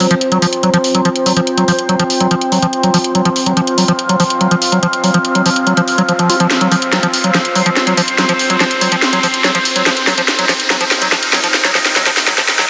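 Psychedelic trance in an intense, driving build-up, cut from a longer piece, where a squelchy, resonant square-wave acid bass riff sits up front with chorus and delay as a filter sweeps across it, over an overdriven electronic garage drum kit with a cracking snare and hi-hat that breaks into a fill at 6.5 seconds. Beneath them, an overtone-sweeping drone of detuned sawtooth and sine holds sustained chords with chorus, while a deep, moody ambient pad with a sub octave adds a mellow background texture. A riser climbs throughout, and a reverse cymbal arrives at 12.4 seconds, all within a lush hall ambience and a dense, heavily limited modern master.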